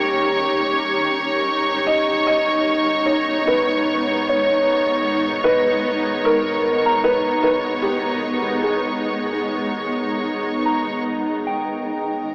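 This melancholic, reflective ambient excerpt drifts at 74 BPM in 3/4, moving from D#7 to G#madd9 and back in G# harmonic minor. A cloudy, detuned granular pad sits up front with its own built-in reverb, holding sustained chords that blur and evolve. A soft FM synth bell spins mellow arpeggios through chorus, phaser and diffuse ambient delay. Alongside it, a biting, intense violin section adds an ensemble texture, while a lush, distant cello section supplies the bass and fades out across the passage. A muted, intimate upright piano with thick felt and audible action noise carries the melody from 1.9 to 10.2 seconds, trailed by its own diffuse delay, and at 11.1 seconds a filter sweep passes over the pad. The whole mix sits in a vast, echoing space with a huge reverb, coloured by a cassette tape and AM radio sound.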